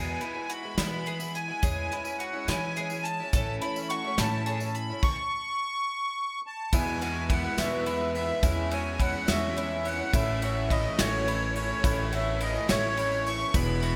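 A reedy, sweet accordion melody sits up front from the start, its light tremolo tuning carried by slapback echo and analog delay, over a dark, shimmering octave-doubled twelve-string guitar, a picked double-strung bowl-back mandolin playing arpeggios, and a thumpy pizzicato upright bass on gut strings. A soft brushed kit with a tight kick enters almost at once, with a jingly tambourine in the background. Floating, distant sul tasto strings add sustained chords from 3.3 s and a clear, very quiet upright piano joins at 6.7 s, shaping a stirring, wistful indie folk piece in 6/8 that builds inside a recital hall reverb with a big arena sound.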